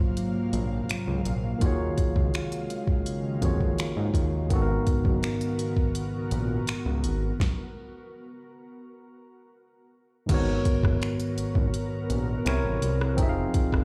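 A smooth, electronic R&B drum kit sits up front with a soft kick, fat snare, smooth hi-hat, rim clicks, finger snaps and crash cymbal, carrying this moody, sensual contemporary R&B excerpt at 83 BPM in a straight 4/4. A barky, clean tine electric piano and a thick, detuned sawtooth analog bass move through chords such as Ab13, Ebm11 and Abm9, while an ethereal, airy pad with ensemble chorus and its own reverb holds slow-attack chords behind them. The music breaks into a stop from 7.4 to 10.3 seconds, then resumes on Abm11 and C7b9, heard through light stone-room reverb as if played on a big sound system in a bare room.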